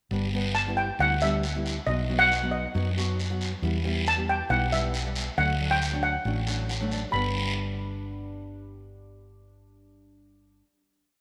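A fingerpicked, full-bodied nylon-string guitar playing syncopated triad chords, a round, punchy hollow-body electric bass with a two-feel root-and-fifth line, and a raspy, distant guiro open this sunny, festive calypso at 137 BPM in G major, joined at 0.5 seconds by a shimmering, up-front lead steel pan played with medium rubber sticks in catchy hook phrases, while the guitar adds a brief fill at 6.5 seconds before the piece rests on a final G chord from 7.1 seconds, with the guiro dropping out shortly after, all set in a lush hall reverb with a rough home-demo sound.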